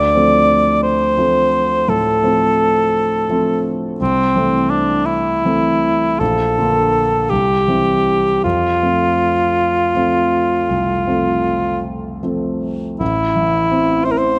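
Close, detailed microphones within a moderate concert-hall reverb give this romantic classical excerpt a present, natural sound. A mellow cor anglais sings the tender melody up front with light vibrato, while a grand piano accompanies with an intimate, long-sustaining tone and audible action noise, both moving in a rubato 12/8 at about 51-59 BPM in F major. The harmony passes from Dm7 through Am/C, Bb and C to rest on F, then shifts to Am at 13.0 s as a new section begins.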